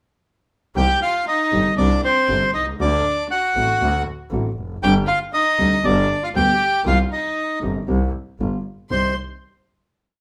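A moderate large-studio reverb gives this short, complete tango a roomy sheen, with the reedy, airy bandoneon and the biting bowed double bass sitting up front. Dramatic and sultry, it moves at 118 BPM in 4/4 with a rubato feel in C minor, as all four parts enter together at 0.8 seconds. The bandoneon carries a motif-based melody in song-like phrases, while a clear chamber violin section plays an earthy second line in octave doubling with light vibrato. Underneath, a dark nylon-string guitar adds short, thumb-plucked classical chords with fresh strings and an audible finger squeak. A single intense bowed double bass drives a milonga rhythm through the harmony, which passes from C minor through D7 and G to a G7 that resolves onto a final C minor chord at 8.9 seconds.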